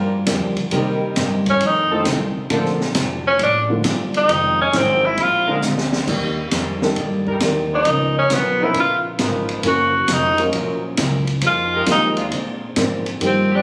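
Heard through a phone in a lively club, this short excerpt of big band swing carries a moderate scoring-stage reverb around a brassy, joyful performance at 134 BPM in Bb major, with a firm swing on the eighth notes. A clear tenor saxophone takes the solo up front from 1.5 seconds, its vintage tone colored by vibrato and scooped notes. Behind it, a bright trombone section holds sustained chords with light vibrato and a soft attack, while a woody, thumpy upright bass anchors the low end. A baby grand piano adds intimate accompaniment with audible action noise, and a dark, clean, compressed hollow-body electric guitar sits in the background. The acoustic drum kit, with dark cymbals, a high-tuned snare and a boomy kick, plays a short fill just before the passage repeats at 6.1 seconds, where the harmony moves through Ebmaj7, Db13 and Gbmaj7.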